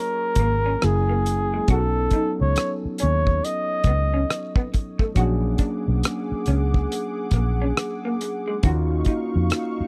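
A breathy, vibrato-laden flugelhorn carries the jazz-style melody up front for the first 4.7 seconds of this relaxed, smooth neo-soul R&B excerpt at 69 BPM with a swung sixteenth-note feel, over a barky, gritty overdriven tine electric piano, a dark, slightly broken-up lo-fi electric guitar second line bathed in lush chorus, a round, punchy foam-muted fingered bass, and a dry, tight-kicked 70s drum kit of hi-hat, kick and rim click, while a thick, detuned sawtooth unison pad with chorus swells in at 5.2 seconds as the harmony moves from F#maj7 through B9 to A#7alt and D#m9, all captured in a dry, close 1970s-style studio sound.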